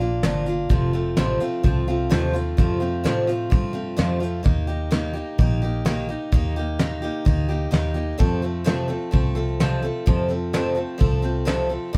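An up-front, boxy parlour steel-string acoustic guitar carries the picked accompaniment, finger squeak audible, in this nostalgic, down-home honky-tonk and classic country excerpt with a straight four-beat feel. A round, foam-muted vintage electric bass sits dark and amped underneath, while a soft brush kit, arriving at 0.2 s, adds a fat snare, tight kick and hi-hat with a smooth studio-room tone. The whole band sounds set back in a wet booth, with the chords moving from Bb and F to Eb as a second section begins at 4.5 s.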